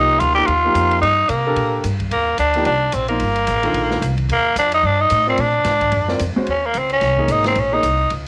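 A fast swing at 220 BPM in 4/4 drives this short modal jazz excerpt in C dorian, its searching, hypnotic mood built on a Cm11 harmony that moves to Bb7 and then Eb7sus4 at 6.5 seconds, where the tenor saxophone takes a solo. The growling tenor saxophone sits up front with a raspy, gritty, vintage tone and vibrato, carrying the melody over a concert grand piano with deep bass, a woody pizzicato upright bass on steel strings, and a dark, smooth drum kit heard on hi-hat, kick drum, ride cymbal and snare, its cymbals dark and its kick boomy. The drums sit low in a small room, entering at 0.2 seconds, and light reverb surrounds the whole group.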